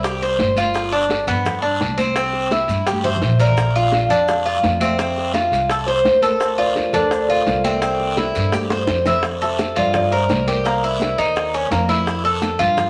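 Tight, dry bongos, bright congas sitting close yet in the background, a raspy guiro and very faint grainy maracas drive a relaxed, sunny Cuban son and guajira groove at 170 BPM in F major, where an up-front, metallic Cuban tres picks arpeggios over a woody, thumpy pizzicato upright bass, a ringing, boxy kalimba carries the melody from 3.1 s, drum fills mark phrase ends, and a brief jazzier passage of Fmaj7, Gm7 and C7 arrives at 9.2 s, all within a short studio-reverberant cut from a longer piece.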